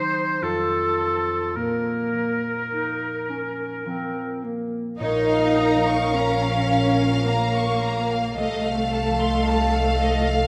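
The rich cello section sits up front in this serene, slow romantic movement for symphony orchestra in B-flat minor, a short cut from a longer piece. It moves in 3/4 at about 52-56 BPM with a rubato feel. It opens with a clear oboe, a soft-edged clarinet and a pure, distant silver flute sharing a quiet woodwind line. Beneath them, a concert harp rings out fingerpicked arpeggios from start to finish. The flute and oboe stop at 4.4 seconds and the clarinet at 5.0 seconds, when the strings and horns enter together. A focused, lush violin section carries the melody, over a second, more distant violin line with a soft attack and expressive vibrato. Smooth, close violas, bowed double basses and mellow French horns holding sustained chords fill out the texture, all within the glow of a moderate scoring-stage reverb.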